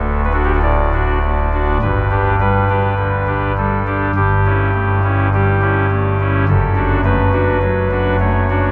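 A pipe organ plays alone on a soft oboe reed stop, its baroque voicing and chiff sitting up front while the instrument as a whole is heard from further back in a cathedral whose reverb lingers for 6.5 seconds. This majestic, serene chorale-style classical passage in D major moves at 51 BPM in 4/4 with a rubato feel, spanning D1 to D5 as the harmony passes from D through G and A7/G to D/F#. The recording is 8.7 seconds long and is cut from a longer piece.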